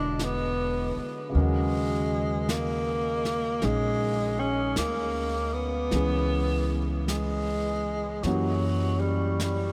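Swung eighths in a slow 4/4 carry this melancholic, intimate jazz ballad fragment, with a brushed kit joining at 0.2 s on brushed snare and hi-hat beneath a woody, thumpy pizzicato upright bass. A mellow tenor saxophone sits up front and leads the melody with vibrato and scooped notes. A concert grand piano with audible action noise and long sustain accompanies over chords moving from E13 through D#m7 and C#m7 to F#7b9, all bathed in a huge, dreamy reverb.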